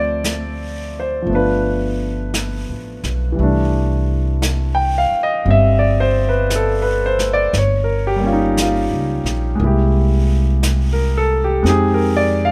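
Jazz ballad excerpt with a late-night, romantic mood and a gentle swing, where a deep, up-front concert grand piano comps through chords from Dm7 to Fm9 over a woody, thumpy pizzicato upright bass, while a small-room brush kit joins at 0.2 s on brushed snare and hi-hat, all in light reverb.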